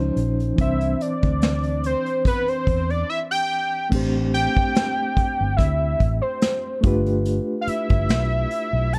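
Dark and dry, this excerpt of lush 1970s-style soul in A minor moves at a bittersweet, smooth 72 BPM with a light sixteenth-note swing, as a reedy electric piano with mild overdrive and fast tremolo opens alongside a round, foam-muted fingered bass, brushed drums with dusky cymbals and a tight kick arrive at 0.2 s, and a fat, detuned sawtooth synth lead with chorus and vibrato takes a solo from 0.6 s, breaking at 3.1 s, over chords drifting from C#maj9 and Cadd9 to Am7 and G13.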